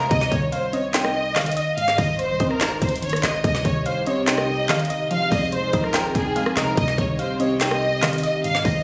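Captured on a phone in the room, this short cut from a longer track carries light studio reverb and compression. It's a hard-hitting, brooding trap beat in C phrygian at 144 BPM, felt in half-time, moving through Cm, Ab, Cm, Fm7 and back to Cm. Up front, a lush, bowed symphonic violin section carries the expressive melody with vibrato and delay, sounding distant in its space. It sits beside an electronic trap kit of hard-clipped kick, woody snare, metallic hats, handclaps and rim clicks. Underneath, a mellow, sine-like 808-style bass sustains low notes, while a lo-fi, nasal, warbling pluck with chorus supplies the accompaniment. A soft, round, dark pluck with chorus and delay traces a gentle second line in the background, and from 3.4 s an airy, breathy pad with detuning, a noise layer and chorus fills in the sustained chords.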